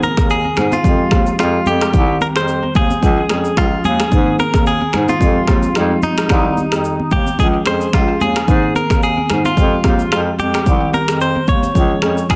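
Afrobeats with a sunny, breezy lilt, this short cut from a longer piece rides a gently swung groove over a looping Abadd9, Fmadd9, Cm and Db progression. A bright, twangy clean electric guitar, picked and compressed, carries the melody up front, its lines trailing off into tape echo. Beneath it, an FM electric piano layered with a soft pad supplies lush, dreamy accompaniment, with fast-attack notes that decay into chorus and echo. A vintage-sounding bass clarinet with a jazz touch and gentle vibrato holds down the low end. The electronic deep house drum kit sits prominently, with an overdriven deep kick, finger snaps, rim clicks and shaker heard as if re-recorded in a large room. Ringing, high-tuned congas played with soft hands add dry detail in the background until about 11.7 seconds, all set in light reverb and digital ambience within an echo-heavy mix.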